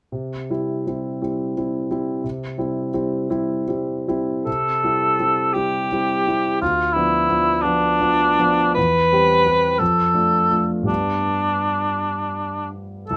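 A warm concert grand piano opens this serene, lyrical romantic classical excerpt in a slow, rubato 6/8 at 55 BPM in C major, its deep bass, long sustain and audible action noise carrying the accompaniment alone until a mellow cor anglais enters up front at 4.5 seconds with a vibrato-touched solo melody, the pair sounding in light reverb as the harmony moves from C through Bdim/D, C/E and Dm/F to G.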